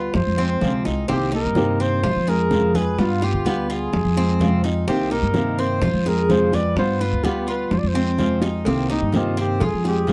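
A straight 4/4 groove at 127 BPM drives this danceable Cuban son and guajira passage in C minor, cut from a longer piece, with an up-front, woody, growly pizzicato upright bass, ringing low-tuned congas, round bongos and cowbell in the background, and a raspy guiro, under a fingerpicked flamenco guitar with audible finger squeak and a metallic, picked Cuban tres spinning arpeggios on its double strings. A trumpet with a bucket mute carries the melody in a mellow, veiled jazz style with light vibrato, and after a drum fill at 8.4 seconds it takes a solo from 8.7 seconds as the chords cycle through Fm, Cm7 and G7. The sound is a dry, close 1970s-style studio recording with light reverb.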